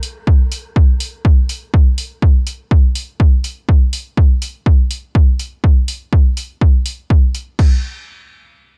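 An overdriven deep house drum kit of crash cymbal and hi-hat opens this dark, hypnotic melodic techno excerpt, joined at 0.3 seconds by a punchy, up-front electronic kick that drives the straight 4/4 groove, all captured in a dry, gritty cassette-tape sound.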